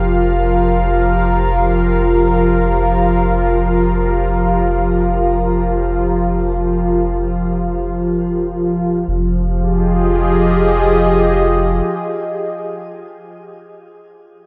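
Reflective and spacious, this free-time ambient excerpt in F minor sets an up-front, warbling analog pad of detuned sawtooth tone with subtle chorus and shimmer reverb holding slow-blooming chords across 13.5 seconds, over a deep, round sine sub bass sustaining F1 until 11.8 seconds, with the harmony settling onto Fm7 at 9.1 seconds inside a dark, warm production and a cathedral reverb whose tails hang for 6.0 seconds.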